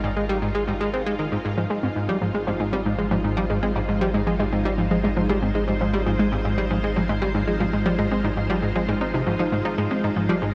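Ambient, sequencer-driven space music with a luminous, cosmic mood, cut from a longer piece. A funky, punchy analog bass riff sits up front with a sawtooth-and-square bite, subtle chorus, shimmer reverb and delay, over a deep, round sine sub bass, while a vintage string machine ensemble fades in with lush, bright sustained chords treated with ensemble chorus and shimmer reverb. From 1.6 seconds a detuned, wave-folded unison pluck adds arpeggios in the background with shimmer reverb and delay, all set in a huge ambient reverb with a cassette tape character.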